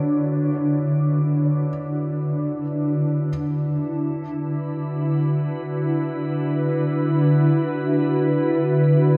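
A glassy, ethereal FM pad holds slow-blooming chords up front throughout this peaceful, luminous ambient excerpt, its ensemble chorus shimmering all the way through while a filter sweep shapes the sound until 3.3 s. A soft felt-muted upright piano with audible action noise plays quiet arpeggios in the background until that same point, all bathed in a dreamy cathedral reverb.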